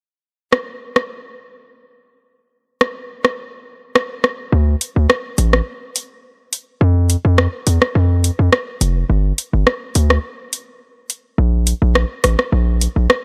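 A straight 4/4 dancehall groove opens at 0.5 seconds on an electronic island pop drum kit with metallic hi-hats and rim clicks played up front, and at 4.5 seconds a punchy, saturated 808-style bass with a sine body, noise layer and fast, decaying attack hits hard beneath it while the kick drops out, giving this dry, tough, sultry cut from a longer piece its heavy low end.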